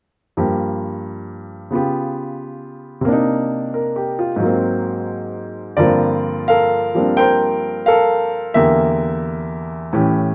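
A clear, natural baby grand piano, up front with short sustain, plays solo jazz in G minor at 88 BPM with a swung, rubato feel, moving through chords such as Gm7, C#7#11, Cm9 and Ab9 before settling on Gm11 at 5.8 seconds and Em7b5, spanning E2 to G5 in moderate studio reverb for a cool, late-night mood in this short piece cut from a longer one.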